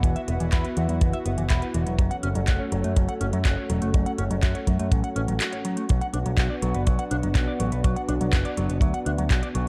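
A steady, straight 4/4 pulse at 123 BPM drives this short italo disco excerpt in F# minor, its mood melodramatic and nostalgic. The kick drum sits up front, dry and tight with a rolled-off top, while a house drum kit adds handclaps and metallic hi-hats, overdriven and layered with the sound of a large room. A picked electric bass with an envelope filter carries the low end, bright and direct, and an electric guitar, also run through an envelope filter, plays clean, twangy arpeggios with delay. Alongside them a lush unison pad holds sustained chords, thick and warbling with a detuned, vintage character, slow attack and chorus. The chords move from Esus2 to F#m at 2.0 seconds and on to Bm at 5.9 seconds, just after a brief break, all set in a dark production with light studio reverb.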